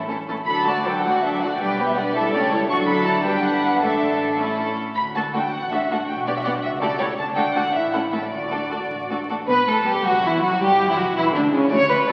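A quick, graceful and spirited classical-period movement for string orchestra in D major and 6/8 at 107 BPM, played with rubato, in which a warm, vibrato-touched violin section carries the melody from 0.5 seconds over a clear, floating second violin line that sits up front, a soft-attacked viola accompaniment, a dark cello section in the background, and a rich double bass section entering first at 0.0 seconds, all bowed sul tasto in a wet concert hall reverb with the crackle of a very old 78 rpm record.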